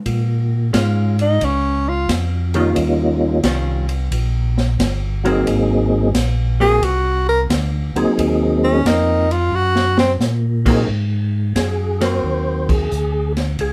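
Swung eighths at 89 BPM in 4/4 drive this greasy, bluesy soul jazz organ trio in Ab mixolydian over Bbm7, Eb9 and Ab9: a lightly overdriven tonewheel organ with slow rotary speaker holds down the bass, an acoustic kit with dark cymbals, a high-tuned snare and boomy kick adds a fill, a clean, compressed hollow-body guitar comps, a breathy, close-miked tenor saxophone plays scooped phrases at 1.2 and 6.6 seconds, and a mellow, percussive second organ with fast rotary speaker carries the melody from 2.5 seconds, all in a moderate studio room heard from further back.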